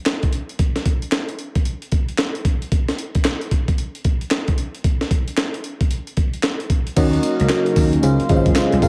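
Confident and slick, this new jack swing R&B cut moves at 113 BPM in 4/4 with a 63% swing on the 16ths, tuned slightly flat at A4 = 436 Hz. For the first 7 seconds a sampler-style breakbeat kit plays alone, gritty and compressed, with a thumpy kick, a high-tuned snare, hi-hat, handclaps, tambourine and crash cymbal, sounding re-recorded in a small room and sitting up front. At 7.0 seconds the harmony arrives over Ebm7 moving to Dbmaj7, as a growly, punchy slap bass joins with an amped electric tone. An FM electric piano layered with a soft pad adds detuned, fast-attack tones that decay under chorus and phaser. A thick, warbling unison pad built from detuned sawtooth and square waves swells in slowly and sustains bright, full-bodied chords with a long release and chorus. A moderate plate reverb with digital ambience soaks the mix in a dreamy haze, and the short excerpt breaks off at 8.9 seconds.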